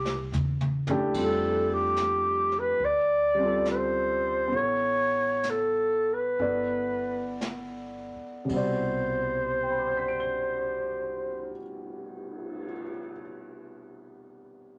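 A romantic, intimate jazz ballad excerpt with a swung feel, where a breathy, dark clarinet carries the melody with vibrato, subtone and scooped notes, sounding whispered and up front in a club-like reverb. A woody, thumpy pizzicato upright bass supports it, while a brushed drum kit with dark cymbals and a boomy kick sits back in the room, the drums opening with a fill before the tempo slows from 1.1 seconds. The grand piano enters at 0.9 seconds with long sustain and audible action noise, moving through lush chords to a closing Cmaj9 and lingering alone until 14.8 seconds.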